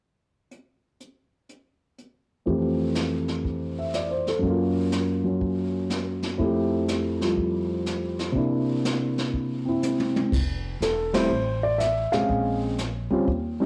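This is a relaxed, playful jazz piano trio fragment in F major, swinging at 122 BPM in 4/4, captured as a home recording on cassette with light reverb and a small room's ambience. Brushed drums open alone at 0.5 seconds, sounding distant and roomy with dark cymbals, a medium-tuned snare and a boomy kick. A dark, mellow baby grand takes the melody from 2.5 seconds, sitting up front with an intimate, natural tone, long sustain and audible action noise. The harmony moves from Fmaj9 to Gbmaj7 and back, then to C9, before a drum fill leads into the closing stretch over Fmaj7 and Bbm7. Pizzicato upright bass joins at 10.3 seconds with a woody, steel-strung sound, and the whole band hits an accent shortly after.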